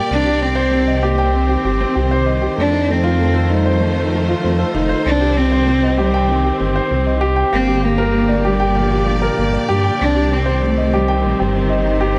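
Hypnotic and intimate, this piano and strings electronica piece moves at 97 BPM in a straight 4/4, set in C dorian and cut from a longer work. A dark, mellow grand piano sits up front playing a riff across the whole 12.2 seconds, its audible action noise adding a vintage, close-up character. Beneath it, a deep detuned saw bass rumbles with a beating, sawtooth edge and fast attack, holding sustained low notes from F1 to G2. A woody solo cello carries the melody with vibrato and a soft sul tasto tone, while a lush symphonic string section supplies bowed sustained chords with expressive vibrato and portamento. The harmony cycles through Cm, F7, Cm and Gm before returning to Cm at 10.0 seconds, all wrapped in light reverb.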